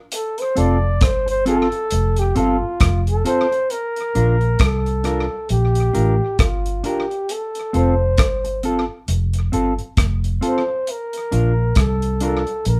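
A breathy, whispered flugelhorn with scooped notes takes the solo for the first 3.7 seconds of this laid-back roots reggae excerpt at 67 BPM in Bb major, moving between F and Bb chords over a damped 70s drum kit with a tight kick, hi-hat, rim click and tape echo, a mellow, clean electric guitar, and a round, foam-muted vintage fingered bass, all captured as a band playing live in one small room with moderate reverb.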